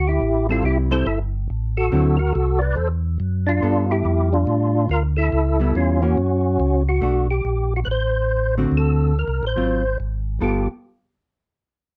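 A swung 4/4 groove at 141 BPM, with a 65% lilt on the eighth notes, drives this short, bluesy and greasy soul jazz organ trio cut from a longer piece, tuned slightly low to A4 = 438 Hz. Up front, a fat, percussive tonewheel organ carries the melody between C#4 and D5, its third-harmonic percussion and key click cutting through a chorus vibrato and a slow rotary speaker. A second tonewheel organ, mellow and round with its own key click and slow rotary speaker, holds down the bass line from G1 to A2. Entering at 0.5 s, a clean, picked hollow-body electric guitar comps in the middle register. The harmony moves through Am7, D9, G9 and C#m7b5, shifting at 7.0 s to Bm7 and D7 before returning to G9. Light reverb and a dark, warm production give the trio a smoky, close feel.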